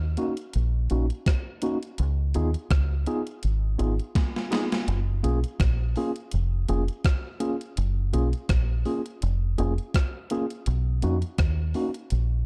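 Tender and romantic, this short lovers rock reggae excerpt moves at 83 BPM in F# major with a lightly swung sixteenth feel, drifting from Bmaj7 through C#7 to a long F#maj7. A deep, round, foam-muted fingered electric bass sits up front with a punchy, dark tone, while a mellow tine electric piano plays soft chords through its built-in speakers. A thumpy, overdriven 80s digital drum machine plays snare, rim click, hi-hat and kick, with gated reverb on its snare and a fill at 4.2 seconds, all in a dry, dark mix.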